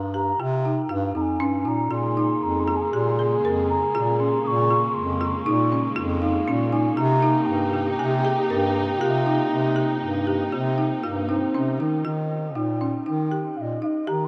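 Contemporary chamber music in 5/4 at 118 BPM, playful and hopeful in Eb mixolydian and cut from a longer piece, moving through Cm7 and Bbm9 before settling on Eb at 12.0 seconds. An up-front bass clarinet carries the bass while a distant, hollow wooden flute with vibrato sings the melody above bright, woody marimba arpeggios played with medium hard mallets. From 1.9 seconds a roomy French horn adds a second line and a rich bowed string section holds smooth sustained chords, the ensemble set in a huge ambient reverb that suggests a vast, echoing space.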